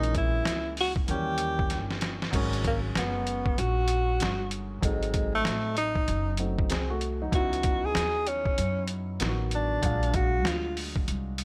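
Smoky and nocturnal, this short jazz-hop cut from a longer hip hop piece sits at 96 BPM in G# minor with a swung sixteenth-note feel, moving through jazzy chords like G#m11 and C#m11 in a dry room. A gritty, overdriven, pitched-down sampler-style drum kit with a thumpy kick, crash, hi-hat and medium-tuned snare sits up front beside a woody, growly pizzicato upright bass and a dark grand piano with long sustain. After a drum fill at 1.7 seconds, the mellow subtone tenor saxophone, present from the start, takes a vibrato-laced solo from 2.3 seconds until it drops out at 10.8 seconds.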